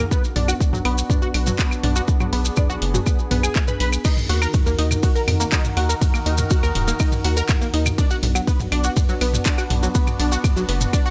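A digital ambience surrounds this short, driving and dramatic slice of melodic techno, with a punchy, layered kick drum sitting up front from 0.1 seconds. Underneath, a tight sequencer bass built from sawtooth and square waves plucks with a fast attack and decaying notes, also up front and pumping against the kick. A tight, detuned sequenced synth spins arpeggios through chorus, phaser and dub echo, its filter-plucked sawtooth and triangle tones sustaining as they pump. Behind them, a bright, vintage pad with a slow attack and filter swell holds evolving, warbling chords with chorus, moving from Bm to Ebm and back to Bm. A house drum kit enters at 0.4 seconds with claves, crash and ride cymbals, handclaps, toms and warm hi-hats, pumping with the kick, while close, grainy acoustic maracas add a mellow shimmer throughout.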